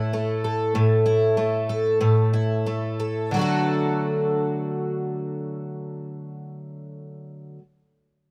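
A shimmering, up-front twelve-string acoustic guitar with fresh strings and octave-doubled ringing sits in light reverb, touched by a subtle chorus. This short pop excerpt in D major feels heartfelt and carefree, the picked guitar playing alone from 0.0 to 7.6 seconds at roughly 87-100 BPM in straight 4/4. It eases its pace over the opening on an A5 chord, then settles onto D at 3.3 seconds.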